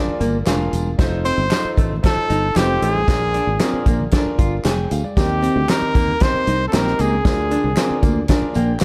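A straight, danceable 4/4 groove from a natural drum kit with a fat snare and punchy kick drives this joyful, uptempo 1960s-style soul excerpt alongside a foam-muted fingered electric bass, a dark, clean archtop guitar riff, an intimate grand piano whose action noise can be heard, close, hard-handed congas, and distant tambourine with group handclaps, while a bright, close-miked trumpet carries the melody with vibrato from 1.2 to 8.0 seconds before a piano fill at 8.3 seconds, all in a dark production with light reverb.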